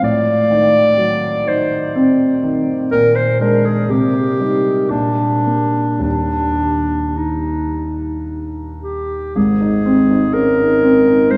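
Romantic classical music for clarinet and grand piano, lyrical and tender in an unhurried rubato three-beat lilt, where the up-front solo clarinet sings a smooth-topped melody over the piano's warm, deep-bassed accompaniment. Both play throughout this brief passage, steeped in the long, wet reverb of a vast, echoing cathedral, with the harmony resolving to Eb before moving to Ab as a new section opens at 9.4 seconds.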